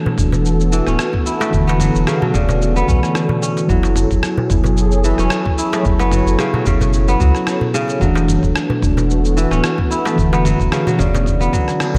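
A steady 111 BPM groove in 4/4 with a light 16th-note swing anchors this hypnotic, earthy organic downtempo excerpt, where a thumpy, gritty electronic kick and a dusty, tape-toned sampler kit of rim click, shaker and toms join at 0.2 s alongside a deep, round sub bass up front, while a crisp, close metal-shell darbuka sits in the background, ringing fingerpicked kora arpeggios with delay weave over muted, felt-like synth keys pumping with chorus and delay and a smooth, detuned sawtooth pad with slow attack, all moving through E7sus4 and F#m7 in light digital reverb before a band accent at 11.8 s.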